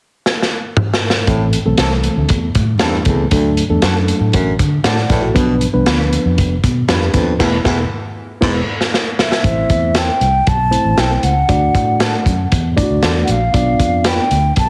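A crunchy breakbeat drum kit sits up front in this urgent, driving slice of uptempo 1960s-style soul, its saturated, gritty tone and dark cymbals opening with a fill at 0.3 seconds before the band arrives. At 1.3 seconds a reedy electric piano, a round, foam-muted electric bass and a breathy baritone saxophone come in together, the sax carrying a low, whispered subtone riff with vibrato until 8.6 seconds. A dark, clean electric guitar adds quiet stabs in the background, touched by subtle chorus. The harmony moves from A minor through D and B diminished to a suspended E that resolves, with a band accent and a second drum fill building tension just before the cycle restarts. From 9.2 seconds a pure, hollow concert flute takes the melody high above, its tongued notes trailed by analog delay. Light small-room ambience surrounds the whole, and heavy compression gives it a radio sound.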